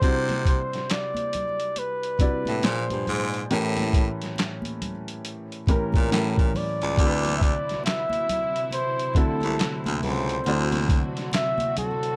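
A dry-sounding, soulful neo-soul and R&B excerpt at a slow 69 BPM with a swung sixteenth feel, moving through Cmaj9#11, Bb9, A7b9 and D13. A veiled, bucket-muted trumpet carries the melody in a forceful jazz manner over a woody, slightly detuned upright piano with audible action noise, while a raspy, close-miked baritone saxophone plays the bass line up front until 11.2 seconds. Gritty, pitched-down boom bap drums with a thumpy kick, snare, handclaps and hi-hat sit prominently, high-tuned congas played with soft hands stay in the background, and a dark, lush bowed string section with vibrato enters at 7.0 seconds.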